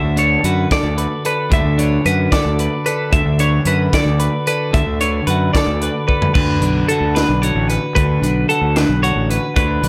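Twangy, spring-reverbed twelve-string electric guitar arpeggios with analog delay ring over a mellower twelve-string accompaniment, a growly fuzz-driven fingered bass and a gritty, tight-kicked fusion drum kit in this intricate, bright math rock and midwest emo excerpt in 6/8 at 74 BPM in D major, moving from Dmaj9 to D6 at 6.3 seconds just after a drum fill at 6.1 seconds.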